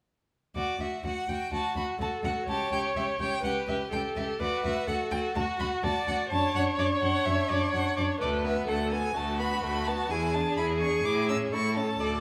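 A single bowed violin carries the melody high above the ensemble, its vibrato smooth and even, though it sits at a slight distance in the sound. This is a quick, spirited classical-period movement for string quartet at 126 BPM in 4/4, played with a lively rubato feel, and the passage is cut from a longer piece. The second violin supplies an even, bowed inner line, while the cello sits up front with a soft attack, expressive portamento and vibrato, anchoring the bass from 0.6 seconds. The viola joins at 1.5 seconds with a full-bodied, expressive accompaniment, also touched with portamento and heard from a distance. The harmony begins in D major and moves to A major from 8.2 seconds, settling on an A chord near the close. A moderate recital hall reverb lends the quartet an open, resonant setting.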